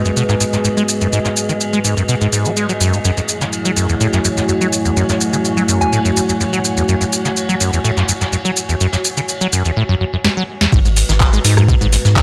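A moody analog pad holding G#m7 and F#m7 chords opens this trippy, driving acid house excerpt at 125 BPM, joined at once by a squelchy, resonant sawtooth acid bass riff sitting up front with tube saturation, chorus and tape echo. An ethereal, airy pad floats above with ensemble chorus and its own reverb, pumping against the beat like the darker pad, and drops out at 9.8 seconds while a filter sweep works on the analog pad. A booming analog drum machine drives the groove with crisp snare, metallic hats, handclaps, rim click and shaker, and a distant brushed jazz kit with ride cymbal and high-tuned snare sits roomy in the background. A soft, pure FM bell touches a single G#5 at 5.8 seconds, echoing on tape. After a drum fill, the drop at 10.7 seconds brings in a deep, round sine sub bass and a thumpy sampler-style kick, both loud in the mix. The whole piece has a light reverb and a cassette-tape character.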